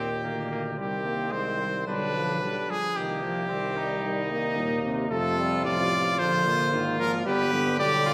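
This classical brass quintet fragment, cut from a longer piece, has a triumphant, warm mood and a flexible, rubato feel, with all five players sounding together throughout its 8.1 seconds. A clear trumpet carries the melody up front, while a second trumpet, punchy and vibrato-laden, sits farther back in the room on a supporting line. Beneath them, a mellow French horn and trombone with light vibrato and smooth tops fill in the accompaniment, and a distant tuba anchors the bass, all bathed in the wet reverb of a church or concert hall.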